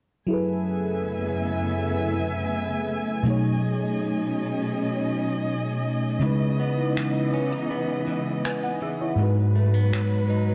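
A lush, dreamy FM electric piano with a soft pad layer, shimmering with chorus and phaser, opens alongside a dark, expressive studio string section bowing sustained chords with vibrato and portamento in this longing, sensual contemporary R&B excerpt, before a clean, direct-recorded electric guitar picks arpeggios from 6.2 seconds and gritty, compressed sampler-style finger snaps arrive at 7.0 seconds, all set in a light reverb with a dark, warm production.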